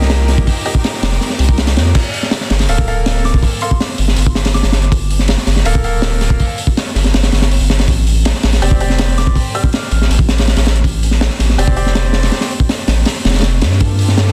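A dense, heavily limited modern master in a small room frames this frenetic, raw drum and bass and jungle cut at 162 BPM in G minor, driven by a crunchy, gritty breakbeat kit with a high-tuned snare and dark cymbals over a thick, saturated sub bass, both up front for the full 14.3 seconds. Bright, brilliant grand piano stabs with audible action noise and dub echo run until 12.5 seconds, while a bowed string section holds sustained chords in the background, opening and closing the passage as the harmony moves from F9sus4 through Gm9 and D7sus4. A breathy, wind-like tuned noise texture drifts in very quietly near the start, and a soft, pure FM synth bell with chorus and dub echo adds brief, mellow melodic touches high above, first at 3.3 seconds.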